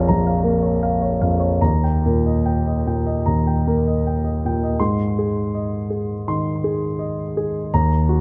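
A solo concert grand piano opens this short fragment, its warm tone placed up front with a deep bass. The style is neoclassical minimalist piano in Ab major, moving in 4/4 at a loose 73-84 BPM with a rubato feel that lets the time breathe. The harmony starts on Bb minor, shifts to Eb at 1.6 seconds, and settles on Ab at 4.8 seconds, where a new section begins and carries the music to the end of the fragment at 8.2 seconds. The piano covers a broad span, from Bb1 in the low register up to C6. Close, detailed microphones and a light reverb give the piece an intimate, hopeful and peaceful character.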